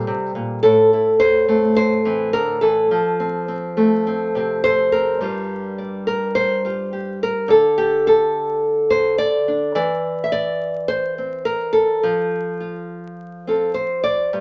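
A small, dark nylon-string guitar sits up front, fingerpicked alone for the full 14.4 seconds of this folk excerpt cut from a longer piece. At 106 BPM in a straight 4/4, the mood is wistful and reflective, and the playing ranges from G2 up to E5. The harmony moves from Gmadd9 through Am and F, then shifts at 5.2 seconds into a second section opening on Gm7, passing through a chordless stretch before Cadd9/E and a return to F. A wet studio reverb gives the guitar a modest sense of room. Vinyl crackle and a faint mains hum sit beneath it, lending the recording a worn, old-record patina.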